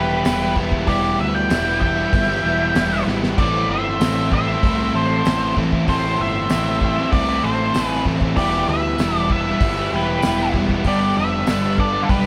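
Swaggering and driving, this 96 BPM classic rock excerpt in A minor sets a dark octave-fuzz lead guitar melody over a quieter second fuzz line, crunchy overdriven and distorted rhythm guitars riffing on Em, Amadd9 and G, a fuzzed picked bass, a very quiet shouting tonewheel organ with slow rotary and key click, a faint jingly tambourine, and a damped 70s kit with a fat snare and a fill at 3.1 seconds, all in a live stone-room sound.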